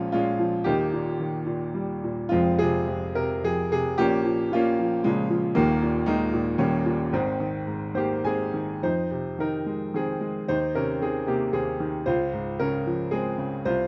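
A clear, boxy baby grand piano sits up front with a short sustain in this bittersweet, moody excerpt of lyrical classical solo piano, moving freely in a rubato three-beat feel, with a brief fill from 7.7 to 8.8 s leading into a new section and its close, detailed sound touched by light reverb.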